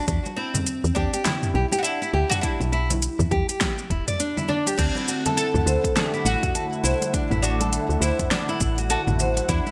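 Fingerpicked nylon-string guitar arpeggios with fresh strings open this mystical, meditative organic downtempo excerpt at 102 BPM, swung on the sixteenths. Joining at once are a round, dark FM bass, a deep electronic kick, and a deep house kit of fat snare, metallic hats, shaker, toms and crash under gated reverb, with soft-handed congas ringing in the background. A plectrum-plucked oud with doubled strings soon carries the fretless, woody melody, and it and the guitar both trail digital delay over an Em7 chord. At 4.8 seconds the harmony moves to D9 and a detuned sawtooth analog pad enters with chorus and sidechain pumping, within a bright 1980s-style digital production and a moderate plate reverb.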